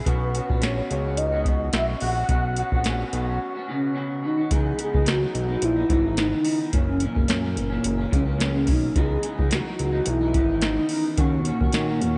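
Hazy and lonely, this bedroom-pop fragment sways at 108 BPM in C# dorian with a light 16th-note swing, cut from a longer indie pop piece and drifting from Bsus2 toward C#m9, F#7 and D#m7 after a short break at 3.4 seconds. A soft vintage rhythm box with a deep kick, tonal snare and metallic hats sits up front beside a fat, saturated, detuned analog bass, while an electric guitar through a small old amp adds a slightly broken-up picked accompaniment drenched in lush chorus, warbly pitch drift and slapback echo. Over them a dark, round, octave-layered synth lead carries the melody with tremolo, vibrato and ensemble chorus, all set in a lush hall reverb that gives a big arena sound with a soft, rolled-off top.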